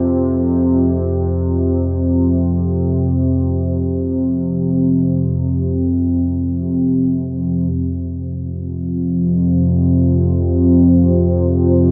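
Cloaked in a vast, wet reverb, this dark ambient drone fragment unfolds in free time over an F5 chord, its mood desolate and unsettling. An up-front analog drone in the low register warbles and evolves with a vintage, resonant sawtooth and pulse-wave tone thickened by chorus, sounding throughout. The piece moves into its second section at 7.7 seconds, and at 8.9 seconds a deep, moody pad joins higher up with full-bodied, detuned sustained chords and a sub octave, adding its own chorus and reverb.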